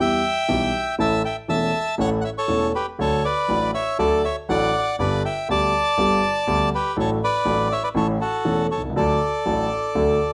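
A reedy, close-miked bandoneon carries the melody up front with slapback echo and plate reverb, while a mellow, intimate dark concert grand piano with deep bass and audible action noise accompanies it in this dramatic, tense rubato tango fragment, moving from Em through A, D and G before coming to rest on D.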